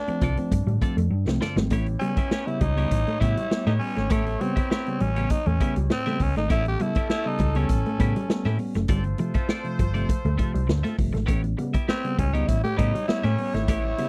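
A dry, close 1970s-style studio recording captures a playful, energetic funk groove at 100 BPM in A mixolydian, tuned to A4 = 436 Hz and cut from a longer piece. After a drum fill from 1.1 to 1.7 seconds, a raspy, growling tenor saxophone with slapback echo takes a solo over a tight, distant horn section that enters at 1.7 seconds, as the chords move between G9sus4 and A9. Up front, a big-band drum kit with a punchy kick and a round, dark hollow-body bass drive the beat. A twangy clean guitar with a vibrato effect and a fingered mellow guitar riff join in, while warm tine electric piano stabs sit in the background.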